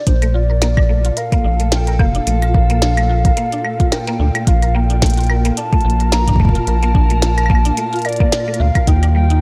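A rubbery, up-front square bass anchors this glitchy, intricate IDM excerpt at 109 BPM, with a light 16th-note swing in Bb major, joined by a deep electronic kick and a tape-toned glitchy kit of tiny snare, clicky hats and claves with delay, while a mallet-like synth pluck plays woody, bright arpeggios, a soft string machine holds silky, phased chords from 0.8 seconds, a warbling, nostalgic lead carries the melody with chorus and delay, and a flickering, grainy texture sits in the background from 0.5 seconds, all over a Bbmaj7 that turns to Eb at 8.9 seconds.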